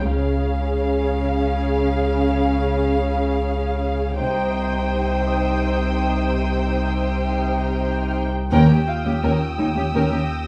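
A thick, saturated sub bass drone sits up front in this eerie, uneasy suspense film cue in 3/4. Alongside it, veiled con sordino strings play: a dark, muted violin melody over violas and cellos, with double basses surfacing at 0.0, 4.2 and 8.5 seconds. A ringing Celtic harp plays in the background, a high violin texture enters at 4.2 seconds, and a second violin line arrives with a full-band accent at 8.5 seconds, all set in a stone room reverb.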